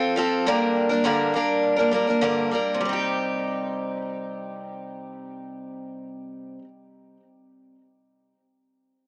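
A straight, even pulse in common time carries this short, wistful rock fragment, cut from a longer piece. A lone picked steel-string acoustic guitar plays throughout its 6.7 seconds, sitting up front with a bright, full-bodied jumbo tone. Its lines move between a G minor chord at 0.5 seconds and a C minor chord at 2.8 seconds, where the passage shifts into a new section. A touch of tape echo trails the guitar's notes, lending the reflective mood a faint haze. Light reverb surrounds the playing, and the overall sound has the narrow character of a small speaker.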